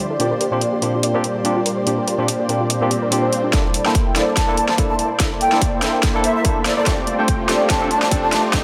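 Playful and euphoric, this future bass excerpt moves at 144 BPM in a half-time feel with a light swing, as a fat, nasal sawtooth polysynth riff leads up front over an ethereal detuned pad, a soft round pluck arpeggio that drops out at 3.5 seconds, and a barky tine electric piano with vintage 12-bit grit and tape echo, all pumping against the sidechain. At 3.5 seconds a build-up begins, bringing in a punchy overdriven kick, a very quiet deep sine 808 bass and a drum fill on the big-room kit's huge snare, while a filter sweep moves across the polysynth and a quiet electronic riser climbs. From 4.4 seconds a distant, mellow jazz flute with vibrato and digital delay carries an expressive melody, as the chords shift from Bb69 to C13 and on to F69/C.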